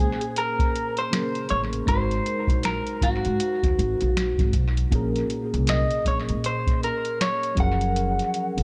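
An electric guitar played through a small old amp carries the melody up front, its picked, compressed tone slightly broken-up and trailed by analog delay. This short cut from a longer R&B and neo-soul piece has a sultry, late-night mood and a swung sixteenth-note feel. Underneath, a worn tine electric piano sits a little out of tune, lightly overdriven and colored by analog chorus and delay. An upright bass anchors the low end with a woody, pizzicato sound on steel strings. From 0.2 seconds, a soft vintage rhythm box joins up front with a deep kick, a tonal snare, metallic hi-hats and finger snaps, its hits echoing through analog delay. The harmony drifts from Bbm9 to Ab9, Bbm7 and Gbmaj7 in a mix that is heavy with echo and touched by light reverb.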